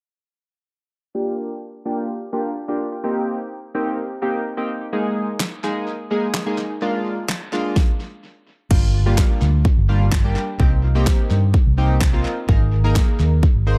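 Glossy, chorused retro synth keys open this energetic, confident dance-pop excerpt at 127 BPM with sidechain pumping and a filter sweep from 1.1 seconds, before a punchy, layered electronic pop drum kit with fat snare, handclaps, crash cymbal and tape echo arrives at 5.4 seconds and a dark, round, foam-muted vintage electric bass joins at 8.7 seconds, the whole track sitting in an echo-heavy mix with light reverb.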